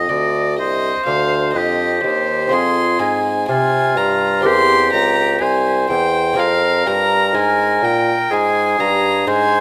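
A light reverb gives this brief passage of a baroque-style sonata movement a soft sense of space. The music is introspective and flowing, in C minor at a slow 62 BPM in a straight 4/4, tuned to A4 = 439 Hz, and it is cut from a longer piece. A close, up-front violin carries the melody between C5 and C6 with a nasal, reedy gut-string tone and an airy bow in period style. A roomy oboe with light vibrato sounds a second line beneath it. A distant bassoon anchors the bass from C2 to C3. The delicate, fingerpicked lute sits lower in the mix as accompaniment, its double gut strings, some doubled at the octave, adding a gentle warmth as the harmony moves from Cm to Fm, then C7 at 4.5 seconds, and back to Fm through all 9.6 seconds.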